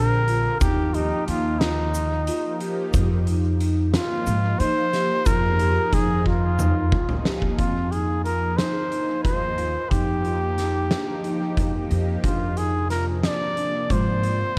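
A breathy, whispered trumpet carries the melody up front in this tense, driving progressive instrumental in 7/8 at 181 BPM in F dorian, cut from a longer piece, over a swirling, detuned analog pad with phaser and chorus, mellow soft-mallet vibraphone arpeggios, a woody pizzicato upright bass and an oversized low-tuned drum kit with a boomy kick and fat snare that plays a fill from 6.3 to 7.6 seconds, while a grainy tube shaker sits in the background until 6.9 seconds, set in an echo-heavy mix with small room ambience.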